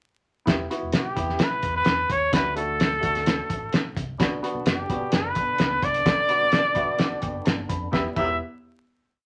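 A driving soul beat with the snare on all four beats pushes this short, uptempo 1960s-style soul piece along at 129 BPM in 4/4, with a passionate, urgent mood in E minor. The cloth-damped drum kit sits up front, muffled and gritty, with a fat snare, tight kick and dark cymbals, while a fingered electric bass in the background plays a melodic, syncopated line with chromatic approach notes. A woody, slightly detuned upright piano lays down push-rhythm chords in close voicing, adding grace notes and a short fill at 6.5 seconds. From 1.0 seconds a vintage, jazz-style trumpet leads with motif-based call phrases, full of vibrato and scooped notes. At 4.2 seconds a very quiet, lightly overdriven tonewheel organ adds a sustained pad with chorus vibrato, alongside a very quiet, high-tuned conga groove played with hard hands. The chords move from Em through D and Bm before landing back on a final Em, all set in moderate studio reverb with a layer of vinyl crackle.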